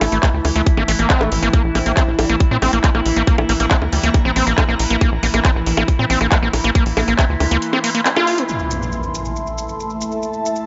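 Psychedelic trance at 138 BPM in a straight 4/4, hypnotic and psychedelic, built on an overdriven, up-front electronic kick, a tight, nasal sequencer bass, a techno kit of bongos, handclaps and metallic hats, a screaming, squelchy distorted acid riff with chorus and delay, an overtone-sweeping drone of sustained chords with phaser and sidechain pumping, an ethereal pad glimmering in the background, and a very quiet juicy blip pluck from 1.8 to 4.3 seconds, before a band accent at 8.1 seconds gives way at 8.5 seconds to an electronic impact, grainy close-miked maracas and the lingering drone and pad in this excerpt.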